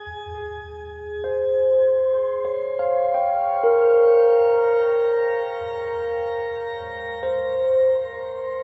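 A bright, barky tine electric piano plays alone and up front for 8.6 seconds in this serene ambient fragment from a longer piece at 50 BPM. Lightly overdriven through a combo amp with phaser and tape echo, it lingers on a Bbm69 chord between Ab4 and G5, inside a wet shimmer reverb with a 7.3-second tail and a hint of small-room ambience.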